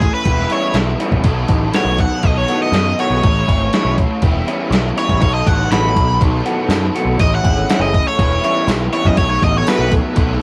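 An overdriven lead guitar opens this upbeat, carefree indie rock excerpt, playing a bright, up-front solo line colored by tape echo and plate reverb over a full band already in motion. Beneath it, a lo-fi, slightly broken-up guitar through a small old amp and a raw, overdriven garage guitar with ensemble chorus and tape echo lay down riffs in a straight 4/4. A growling, picked bass with its own overdrive anchors the low end, while a gated 80s drum machine drives the beat with a thumpy kick, a gated-reverb snare and hi-hat, sounding overdriven and re-recorded in a small room. At 6.2 seconds a very quiet, warbling sawtooth pad with a slow attack and filter swell slips in with sustained chords, and a jingly tambourine joins faintly in the background at 6.7 seconds. The parts circle through Em6, B7sus4 and Amaj7, and the whole mix carries a homemade cassette character with vinyl crackle and light reverb.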